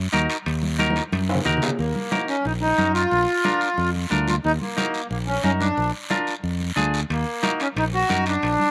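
A fiery, passionate cumbia excerpt in Eb harmonic minor opens on a direct, up-front fingered electric bass, joined almost at once by a bright, clean semi-hollow electric guitar picking its accompaniment, with congas, a raspy close guiro and ringing metal-shell timbales. At 181 BPM in a straight 4/4, the congas sit in the background with a damped, thin-skinned, vintage band-limited tone, and the timbales share that older, narrow-band character. A drum fill leads into the accordion's entrance at 1.8 seconds, when its reedy, dark, smooth voice takes the melody up front with a slow beating quality and a slapback echo. The harmony moves between Ebm, Bb and Bb7, and the timbales drop out, then return at 7.1 seconds as the chords settle back on Ebm. The sound is dry and open-air, with little reverb and an absence of room sound.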